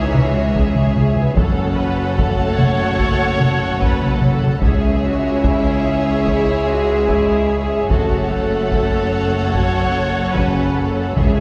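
The excerpt opens with a full orchestra at once: bowed violins carry the melody between E5 and F#5 with vibrato and a soft, expressive attack, while a second violin line sits distant in the background beneath them. This is a heroic, dramatic film-score cue in 4/4 at 74 BPM, moving between C#m and F#m. Lush violas provide accompaniment, and a very quiet, focused string section holds the sustained harmony. French horns, set in the background, and a tight, very quiet trombone section add classical-style brass chords with light vibrato. The low end rests on a bright double bass section and rich, even cellos, and a taiko ensemble struck with hard sticks drives the drums from 0.1 s, sounding as if in a small room. Round timpani on soft mallets arrive on C#3 at 11.2 s, and the whole is heard from further back in a concert hall with a 2.1 s reverb.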